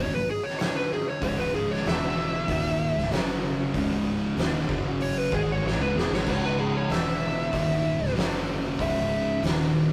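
A brooding, heavy stoner and doom metal clip opens on a distorted fuzz lead guitar playing a soloing melody up front, over a low riff from two thick fuzz guitars set in the background and a very quiet, double-tracked, compressed overdriven electric guitar. Beneath them, a metallic FM bass with a fast, decaying attack and a touch of drive adds a mellow digital undertone. At 0.5 seconds an oversized low-tuned drum kit enters up front, its punchy kick, fat snare, hi-hat, crash and splash cymbals sounding gritty and saturated in a bright stone room, with a drum fill from 5.6 to 6.3 seconds. The harmony moves between C# minor, E5, F#5 and C#5 before landing on D#5 at the close. The whole clip has the feel of a rough rehearsal-room recording, with warm saturation and moderate reverb.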